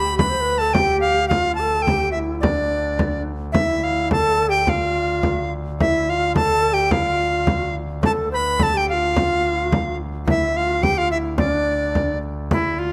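A straight 2/4 pulse at 107 BPM drives this medieval dance in D dorian, cut from a longer piece and carrying a mysterious, driving mood. The frame drum enters at 0.2 seconds with a deep, large sound, close and dry under hard hands. Up front, a bright, reedy tenor recorder carries the melody with tongued chiff and vibrato, while a breathy bamboo shakuhachi adds a second line with soft attacks and expressive vibrato, stopping at 12.2 seconds. Beneath them, a pipe organ holds a thick D drone on its foundation stops, warm and romantically voiced. A short opening section gives way to a longer second one at 3.6 seconds, all set in a moderate recital hall reverb captured by close, detailed microphones.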